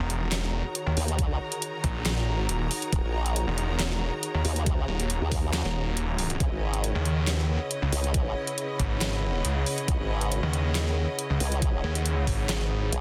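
A dense, heavily limited and dry mix opens this short cut from a longer heavy wobble dubstep piece, menacing at 138 BPM in a half-time 4/4 feel in Eb phrygian, moving from Ebm to Dbm7 at 6.4 seconds. A snarling, distorted saw bass growls up front from the start, joined at 1.0 seconds by a detuned formant-sweep wobble bass with chorus, while a distant, lush symphonic string section holds bowed chords with vibrato and sidechain pumping. Beneath them a warbly, lo-fi tape-like pad adds nostalgic texture through chorus, phaser and its own reverb. An up-front overdriven kit of handclaps, hi-hat and deep snare drives the track, and an overdriven, knocking electronic kick enters at 1.2 seconds.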